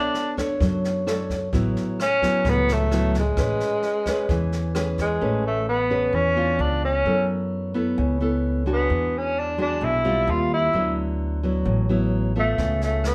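Relaxed and sunny, this bossa nova passage, cut from a longer piece, moves in a straight 4/4 feel. A breathy tenor saxophone carries the melody up front, its subtone intimate and whispered, with vibrato, soft attacks and scooped notes in a vintage jazz style. Fingerpicked nylon-string guitar, full-bodied and deep, supplies the accompaniment through lush chords such as Bm9, Amaj9, F#m11 and C#7b13, while a woody pizzicato upright bass joins at 0.6 seconds. A brushed drum kit with a boomy kick, rim click and snare plays until 5.0 seconds, then returns at 12.6 seconds. The recording sits in a wet studio reverb, heard from further back in the room.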